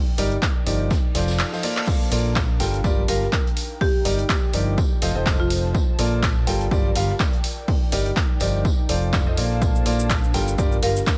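A punchy electronic kick drum sits up front in this uplifting, joyful piano house excerpt at 124 BPM in Bb major, with a gently swung 16th feel, while a clear concert grand piano with deep bass and long sustain plays a pumping riff through delay over an overdriven, amped electric bass that cycles through Ebmaj7, F7, Bbmaj7 and Gm7. An analog drum machine adds crash, handclaps, hi-hat and shaker, and a soft-mallet acoustic kit with a fat snare and tambourine hangs further back. An airy, breathy, warbling vintage pad fades in underneath from the start, a reverse cymbal rises at 1.1 s into a drum fill, and a dark, smooth marimba melody with delay drifts in the background from 3.1 s, all framed by a small room reverb.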